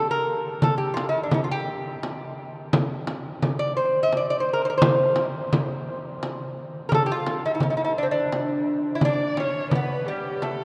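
In a straight 3/4 at 86 BPM, this longing, melancholic Persian modal ensemble piece, tuned to A4 = 442 Hz, opens with a delicate, fingerpicked lute of doubled gut strings carrying the melody up front with a slapback echo; a small, bright frame drum played with soft hands joins at 0.6 s, and a distant, bowed kamancheh enters at 9.0 s with vibrato and portamento on an expressive second line, the ensemble heard in a vast, echoing space under a wet cathedral reverb.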